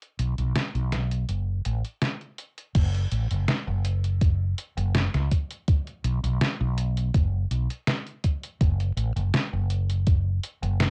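A straight 4/4 pulse at 82 BPM sets a hazy, nostalgic vaporwave mood in this short cut from a longer piece. A detuned 8-bit digital drum machine opens the track with crash cymbal, hi-hat and a medium-tuned snare, its sampler-style sound gritty and tape-toned, re-recorded in a small room and placed up front. A mellow fretless electric bass joins almost at once, dark and round with a direct, tube-saturated tone moving between F#1 and C#2. At 2.8 seconds a new section begins as an electronic kick drum arrives, thumpy and sampler-style with 12-bit grit, re-recorded in a large room yet still up front, before dropping out at 10.2 seconds. The whole piece has little reverb and the character of a home recording on cassette.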